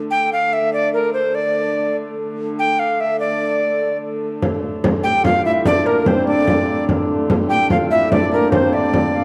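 A straight-feel 6/8 medieval dance at 98 BPM in D minor, ancient and mysterious, opens with a dark, woody hurdy-gurdy drone beneath a breathy, up-front tenor recorder melody with vibrato and chiff, joined at 4.4 seconds by a small, bright, saturated frame drum and at 5.0 seconds by a shimmering hammered dulcimer and a very quiet, distant, reedy alto recorder on second lines, all set in a dark recital-hall reverb in this short cut from a longer piece.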